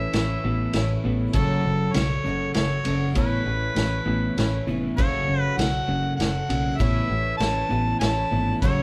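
Jangly and nostalgic, this folk rock and heartland rock excerpt in A major moves at 99 BPM in 3/4. An up-front, mellow harmonica carries the melody with scooped notes over a shimmering, octave-doubled twelve-string acoustic guitar, a dark, slightly broken-up electric guitar riff, a round, foam-muted picked bass and a vintage drum kit with dark cymbals and a punchy kick, all cycling between Aadd9 and F#m in the small-room sound of a band playing live together.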